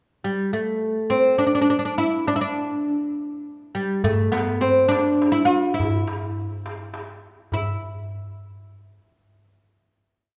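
A fretless oud opens at 0.2 s, its plectrum-plucked double strings sounding woody and deep as it carries a melancholic, ornamented modal melody in a straight 6/8. At 4.0 s a crisp metal-shell darbuka joins from a distance, playing a pattern of low and high strokes beneath the oud. A moderate concert hall reverb lends the short Arabic maqam piece a spacious sense of longing.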